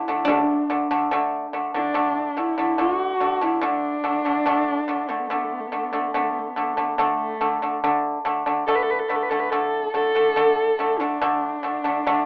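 Mongolian folk at a straight 71 BPM in D gong mode, vast and proud, where a husky, up-front horsehead fiddle carries the expressive bowed melody with vibrato and portamento over mellow, percussive pipa arpeggios, while a silvery, ringing guzheng adds a second line until 3.0 s and a frame drum played with soft hands sounds briefly from 0.3 s, all in a rough, telephone-like home demo mix bathed in wet studio reverb.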